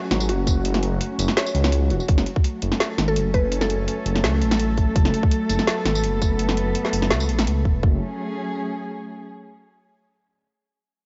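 Half-time drum and bass with a dark, heavy mood, this excerpt opens straight on the drop, with a bowed, sul tasto cello section holding sustained chords that pump against the sidechain throughout. A soft, felt-muted upright piano plays arpeggios through analog delay for the opening stretch, its action noise audible and intimate, before dropping out at 2.1 seconds, where a filter sweep begins on the deep, rumbling detuned saw bass. Up front, a tight electronic kick and a layered kit of woody snare, metallic hats and tambourine carry a cassette-tape grit, both sounding re-recorded in a small room. A round, mallet-like FM pluck adds a brief bright melody from 3.1 seconds, colored by chorus and delay. Light reverb surrounds the home cassette recording, whose top end is rolled off, and the harmony shifts to an added-ninth minor chord at 7.8 seconds as the piece is cut from a longer work.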